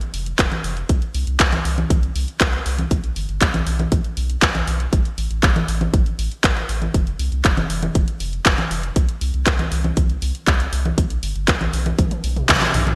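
An up-front house drum kit opens this nostalgic, bittersweet italo disco piece, its congas, handclaps, hi-hat and toms layered and dressed in gated reverb with a touch of studio ambience. At a straight 119 BPM in 4/4, a punchy electronic kick drum joins at 0.4 seconds, adding its own produced, layered weight. Underneath, a round analog bass moves between F1 and C2, its deep, dark tone carrying tube saturation, a filter sweep, fast attacks and sustained notes. The whole piece sits in a lush hall reverb with a bright 1980s-style digital sheen, tuned slightly high to A4 = 441 Hz. Cut from a longer piece, it closes with a drum fill starting at 12.0 seconds and a band accent at 12.5 seconds.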